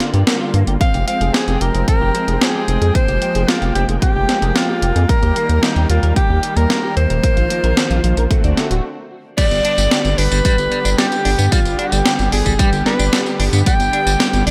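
Synthwave with a nocturnal, moody air, led by a clear alto saxophone playing a jazz-style solo line with vibrato, scooped notes and delay over soft, detuned supersaw chords that pump against the sidechain and carry a vintage sampler grit. A round, deep analog bass with tube saturation and a tape-tinged drum machine sit up front, the machine's snare, hi-hat, tambourine and crash riding gated reverb alongside a punchy layered electronic kick, while a clean, compressed electric guitar plays arpeggios through ensemble chorus in the background. After a brief stop at 8.8 seconds, a bright, twangy, slightly broken-up guitar riff takes over from 9.4 seconds as the music lands on a G chord.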